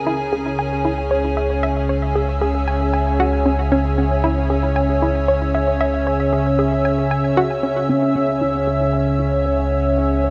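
Expansive and cosmic, this sequencer-driven space music excerpt rests on a lush, warbling pad of sustained chorused chords over a round, deep analog bass, while a hollow, bouncy square pluck carries the riff through chorus and tape echo, and a filter sweep shapes a synth arpeggio until 7.9 seconds. Near the close, at 9.7 seconds, a barely audible wind-like noise texture breathes in beneath the other parts. The whole is steeped in a long plate reverb and has a cassette tape character.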